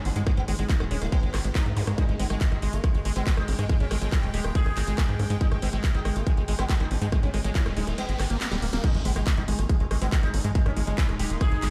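Intense and alien, this psychedelic trance excerpt at 140 BPM in G# harmonic minor drives on an overdriven, up-front electronic kick and a punchy sawtooth sequencer bass, with a techno kit of cracking snare, metallic hats, handclaps, rim clicks and crash, a squelchy, resonant acid bass riff with chorus and delay, a buzzing plectrum-plucked sitar melody shimmering through phaser and digital delay, a bright, morphing wavetable pad pumping in the background, and very quiet zaps, a riser and an impact; the kick drops out at 8.0 seconds, with a drum fill from 8.4 seconds, before the drop lands at 8.8 seconds, all set in a large studio reverb.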